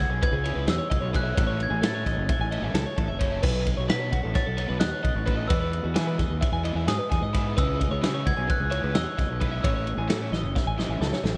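A dreamy mix soaked in cathedral reverb opens this brief excerpt of math rock and midwest emo, wistful yet bright, moving at 262 BPM in eighths through a straight 9/8. A glockenspiel struck with rubber mallets carries the melody in a mellow, bell-like ring with tape echo, while a twangy, compressed twelve-string electric guitar spins clean picked arpeggios, also through tape echo. Underneath, a fuzz-soaked fingered bass sits up front with a growly, overdriven tone, and a loose indie drum kit brings a punchy kick, dark cymbals and a gritty, saturated character with a rolled-off top. A double-tracked overdriven electric guitar plays a riff further back in the mix, entering at 0.2 seconds. The harmony moves from C#m7 through A6, B7 and Emaj7 before returning to C#m7 and settling on A, and a drum fill from 10.3 seconds closes the passage.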